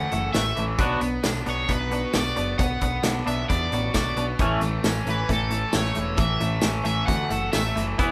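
Indie rock at 133 BPM in A major, wistful yet carefree, with a band playing live in one room, moderate studio ambience and a loose drum kit up front with a punchy kick, hi-hat, snare and tambourine. An overdriven semi-hollow guitar carries the melody until 7.8 seconds, over a scooped, compressed overdriven guitar riff, a clean, twangy electric guitar riff and a growling, overdriven picked bass. The chords move from A to B minor at 0.8 seconds and back to A at 4.4 seconds in this short cut from a longer piece.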